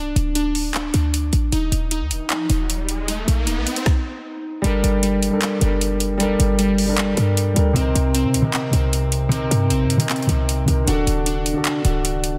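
A half-time trap groove at 154 BPM drives this menacing, dark hip hop cut in G harmonic minor, with an up-front electronic kit of hard-clipped kick, woody snare, metallic hats and handclaps over a punchy, tight 808-style bass that runs throughout. Glassy digital keys play airy arpeggios treated with chorus, tape echo and a filter sweep, while an electronic riser enters at 2.1 seconds. At 4.6 seconds a dark, mellow grand piano with audible action noise and long sustain enters as intimate accompaniment over Gmadd9, Cm7 and D, all set in a dry, dense, heavily limited modern master.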